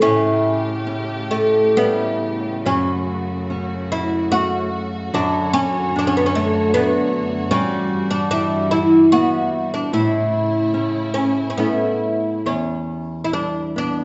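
Mournful and longing, this brief excerpt from a longer piece is a Celtic slow air in three-time, played with a loose, rubato feel. A plectrum-plucked fretless oud carries the melody up front, its double strings giving a woody, warm voice. Beside it, a small fingerpicked nylon-string guitar provides close accompaniment, its tone warm and intimate. Beneath them a rich string section holds lush, bowed chords with vibrato and a smooth top, dropping away at 12.4 seconds as the music moves into a new section at 12.5 seconds. The whole performance sits in a reverberant church or concert hall, with a soft, rounded sound that carries a lingering tail.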